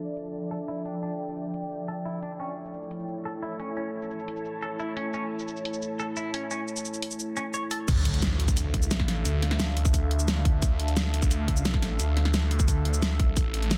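A straight 4/4 pulse at 175 BPM drives this aggressive, dark technical drum and bass clip in D harmonic minor, where a dubstep drum kit with a huge snare, bright hats and cabasa plays throughout under a moody, phased analog pad pumping on Dm and A chords, while an ethereal airy pad and clean, hollow-body electric guitar arpeggios with dub echo ride a filter sweep until the drop at 7.9 s, when a tight, up-front electronic kick, a swirling, saturated detuned saw bass and a background impact hit land together, all under a dense, heavily limited master.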